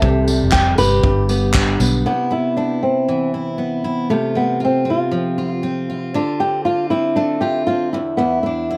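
Sunny and easy-going, this short acoustic pop excerpt in C major moves at 117 BPM with a swung 16th feel, as a dark, boxy, thumb-plucked flamenco guitar with finger squeak and tape echo carries the melody over a picked steel-string acoustic guitar, while a mellow, flute-like tonewheel organ with key click and fast rotary speaker, a round, foam-muted electric bass, and a brush kit with punchy kick, handclaps and tambourine drop out near 2.0 seconds, leaving the two guitars to continue through Cmaj7, Dm7 and Bmadd11/E under light reverb.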